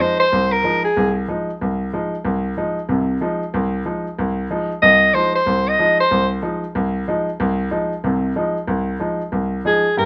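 A moderate studio reverb, about 0.7 seconds long, surrounds this brief jazz passage cut from a longer piece, with both instruments sitting up front. The music moves at a brisk, swung 187 BPM in 4/4, set in F minor and opening on an Fm7 chord, and its mood feels searching and spiritual. A soprano saxophone carries the melody in short solo phrases that begin at 0.0, 4.8 and 9.7 seconds. Its vintage, warm tone has vibrato, a soft attack and scooped notes. Beneath it, a baby grand piano plays accompaniment from start to finish with a clear, natural sound and short sustain.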